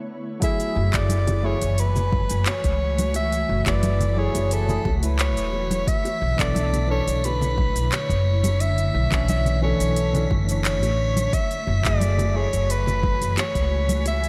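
Sunset chillout in F# minor at 88 BPM, this wistful piece drifts between F#m9 and Bm11 as a breathy, whispered soprano saxophone carries the jazz-style melody up front with vibrato and slapback echo over a woody, growly pizzicato upright bass entering at 0.8 seconds, mellow chorused electric-piano-like synth keys, an ethereal pad that sounds alone for the opening moment, a deep overdriven electronic kick, a smooth R&B kit of cabasa, handclaps and hi-hat, bright bongos and congas in the background, and a dark wind-like noise texture arriving at 1.6 seconds, the mix sitting in a lush hall with a big arena sound.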